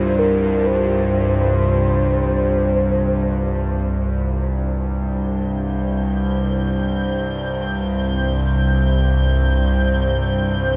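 A string-like, bowed drone sits up front in this ominous, vast dark ambient excerpt, its tense, wave-folded low tone carrying vibrato and its own reverb as it sustains throughout. A mellow, horn-like synth lead with a round tone, chorus, tape echo and vibrato opens the piece with a short melody that ends at 3.9 seconds. In the background, a deep, moody analog pad holds sustained chords with chorus and a ring-modulated edge, and it fades out over the first 4.9 seconds. At 5.8 seconds an icy, crystalline glass pad enters on a single high note, airy and bright, with chorus and reverb. The music floats in free time within a huge, wet, long-decaying reverb and a dark production.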